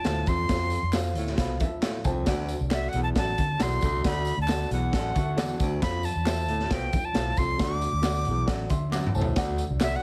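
A bright, breathy jazz flute carries the melody up front over woody, boxy upright piano, a dark, round muted electric bass and a gritty, saturated garage drum kit with a boomy kick and high-tuned snare, as uptempo 1960s-style soul at 135 BPM in D mixolydian moves between F and D chords with a warm, uplifting mood. A whispered baritone saxophone riff and background handclaps and tambourine join almost at once, the piano adds a fill at 1.4 seconds, and a slightly broken-up electric guitar riff with spring reverb slips in at 4.9 seconds before a drum fill at 8.9 seconds. The short cut from a longer piece sits in a small room, squeezed into a heavily compressed radio sound.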